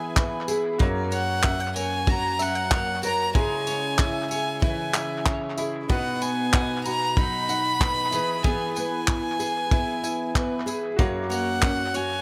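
An echo-heavy small room with light reverb frames this easy-going, heartfelt acoustic pop excerpt at 94 BPM, where a close, airy-bowed violin with light vibrato sings the melody up front over a bright, double-tracked fingerpicked nylon-string guitar, round picked mandolin arpeggios, a polished grand piano with audible action noise set in the background, and a loose, gritty indie drum kit of punchy kick, handclaps and tambourine entering at 0.2 seconds, all moving through E, F#, C#m and B.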